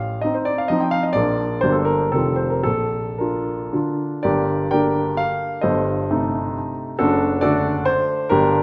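Dotted triple-time rhythms in 3/4 drive this proud, graceful romantic classical dance for solo grand piano, played with rubato between 105 and 141 BPM, its polished, present tone sitting up front in a wet recital hall reverb as the harmony turns from Bb major to G minor at 4.2 s in a brief extract cut from a longer piece.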